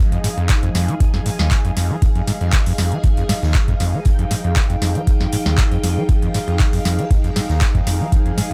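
Driving and gritty, this acid house fragment rides a squelchy, distorted acid bass riff over a lush vintage string machine holding an Fm7 chord, with a warbling, lo-fi tape-like pad adding nostalgic, detuned texture, and all three parts pumping against the sidechain. An overdriven, deep electronic kick sits up front from 0.5 seconds, while a booming analog drum machine supplies crisp snare, claps and metallic hi-hats from 0.1 seconds. Far beneath them, a very quiet acoustic big-band drum kit adds natural, big-room hi-hat and snare, all under a light reverb.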